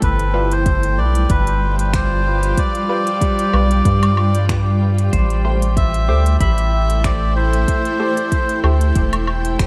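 A reedy, breathy melodica carries the melody through vintage sampler grit and dub echo in this deep, spacious ambient dub excerpt at 94 BPM in A minor, with a lightly swung 4/4 feel and a move from G7 to Am7 at 5.1 seconds. Beneath it, a round, soft sub bass with tube saturation sits up front, a cloudy, evolving granular pad holds sustained chords, and a layered electronic kick is joined by a tape-warm kit of finger snaps, crisp hi-hat and woodblock. In the background, a muted, detuned dub chord stab with chorus and echo plays from 0.3 seconds, a clean pedal steel guitar adds slide arpeggios with echo from 3.2 seconds, and vinyl crackle with light reverb runs underneath.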